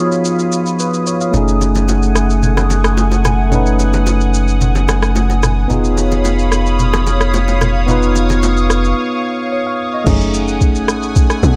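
A punchy sub bass with a pitch-drop attack sits up front in this soulful, deep amapiano excerpt at 110 BPM in F# dorian, cut from a longer piece, holding a sine-based low end from 1.3 to 8.9 seconds. A clean tine electric piano, heard as if through built-in speakers and filtered, carries the accompaniment throughout, while a lush, detuned unison pad of sawtooth and square waves sustains bright chords with chorus, phaser and sidechain pumping. A soft-kicked electronic R&B kit of kick, rim click, shaker and crash keeps a straight 4/4 feel, joined by saturated, compressed congas and bongos in the background. The harmony moves between C#9/E# and F#m69 under a filter sweep, and a break from 9.0 seconds clears space before the drop at 10.1 seconds. There a tight FM log drum bass with a noise layer, a fast attack and a decaying tail takes over the low end, all set in a digital ambience.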